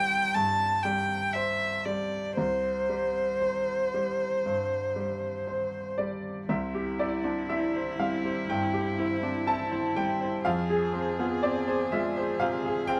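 Tender and hopeful, this neoclassical excerpt moves at a rubato 60 BPM in C major, with a smooth, vibrato-rich solo bowed violin carrying the melody up front over a brilliant concert grand piano with deep bass, joined at 6.5 seconds by a ringing, fingerpicked Celtic harp playing arpeggios in the background, all captured live in one room with moderate studio ambience as the harmony shifts from C to F minor at 10.5 seconds.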